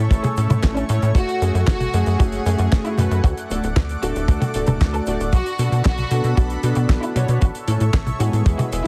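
Sunny and playful, this italo disco excerpt in A major moves at 115 BPM with a straight 4/4 feel, built on a punchy, saturated sawtooth sequencer bass and an up-front dry kick, a damped 70s kit with fat snare, cabasa, handclaps, hi-hat and toms, bold chorused analog synth brass stabs, a lush detuned unison pad washed in chorus and phaser, and a rich bowed violin section melody carried on digital delay, all moving through A, F#madd9, D and Bm7 under light reverb and a heavily compressed radio sound.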